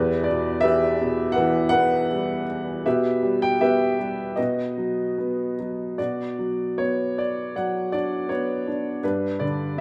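An upright piano opens alone in this reflective, wistful classical fragment, played lyrically in 4/4 with a flexible, rubato pulse. The instrument sits up front with an intimate, woody character and a slightly boxy body, and the soft clatter of its action is plainly audible beneath the notes. Its long sustain lets each chord ring, spanning from deep bass notes up into the upper middle of the keyboard. A new section begins at 6.0 s, shifting the harmony before the passage settles onto a fresh chord at 9.0 s. A moderate recital-hall reverb surrounds the piano, and the music breaks off at 9.8 s as a short cut from a longer piece.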